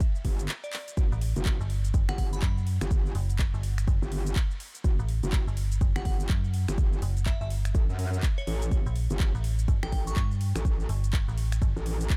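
A distorted, wobbling bass pushes up front in this aggressive, swaggering bass house excerpt, its chorus and tube saturation pumping against a punchy electronic kick, while a second, mellower FM bass with a digital, decaying edge joins at 1.1 seconds. A layered house kit of finger snaps, handclaps, shaker and metallic hi-hats sits behind them, with a short break and a drum fill near the start. A crystalline synth bell drifts in the background through phaser and diffuse delay, briefly early and again from 6.0 seconds, all set in a digital ambience.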